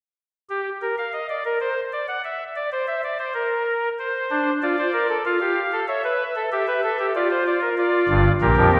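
A solo pipe organ enters at 0.5 seconds on a soft, reedy oboe stop with tremulant, placed up front in this driving, serious baroque-style three-part fugue in triple time. Its lines range from deep low notes to high upper notes, moving from an unharmonized opening through Fadd9, a rootless C#dim and Dm/F before settling on G minor at 7.8 seconds. A wet recital-hall reverb surrounds the baroque voicing, and the passage is cut from a longer piece.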